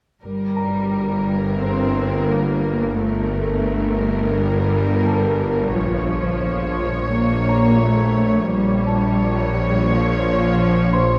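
A bright, string-like drone with a sawtooth edge sits up front in this ominous, eerie suspense cue, cut from a longer film score. It enters low at 0.8 s with a slow attack, a noise layer, vibrato and its own built-in reverb, holding a tense sustained tone. Alongside it, a distant, lush double bass section and a warm, soft-attacked cello section play con sordino from 0.2 s. Above them, a veiled violin section carries a narrow melody with vibrato. A mellow, vintage-toned baby grand piano adds a quiet upper texture with long sustain, and the harmony moves from one minor chord to another at 5.8 s. The whole ensemble sits in a moderate concert hall reverb in a steady, straight four-beat pulse.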